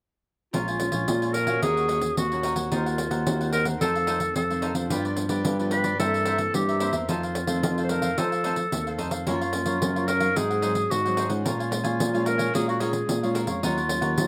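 A dry, open-air sound with little reverb frames this bittersweet yet lively samba and choro, cut from a longer piece, where a clear clarinet sits up front as the jazz-style solo voice, its vibrato and scooped notes carrying a distant, roomy tone and a slapback echo. Beneath it, a crisp, picked cavaquinho and a fingerpicked classical nylon-string guitar in the background supply the accompaniment, both touched by slapback echo, while a bright, barky tine electric piano, lightly overdriven through a combo amp, plays the bass line. A jingly pandeiro played with soft hands drives the percussion throughout, as the harmony moves from Bbm7 through Gbmaj7 and Ab7 before returning to Bbm7.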